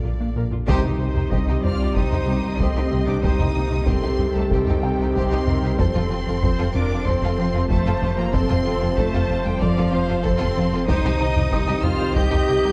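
Relentless and vast, this cinematic hybrid of orchestra and electronics moves at a straight 94 BPM in C dorian, a short slice of a longer cue whose chords pass from Bb to Cm, F and back to Cm, with a full-band accent at 0.7 seconds just as taiko drums (in from 0.5 seconds) and sustained chords from a bright, very quiet trombone section and mellow French horns arrive. Lush, vibrato-rich violins carry the melody high above a second violin line and a focused viola accompaniment, while a rubbery, hollow square-wave bass riff, a deep sine sub bass, and smooth cello and double bass sections anchor the low end. An airy, breathy pad holds soft sustained chords while a felt-muted upright piano adds faint texture, all set in a moderate concert hall reverb with a dark production.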